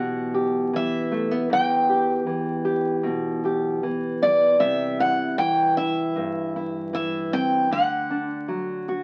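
Wistful and intimate, this short fragment of an acoustic folk piece has a full-bodied, jumbo-toned picked steel-string guitar carrying the melody up front, alongside a deep, classical-sounding fingerpicked nylon-string guitar. Pizzicato upright bass sits in the background with a woody, growly thump as the chords move from E minor to C and then D. A moderate studio reverb and the crackle of a very old 78 rpm record give it a worn character.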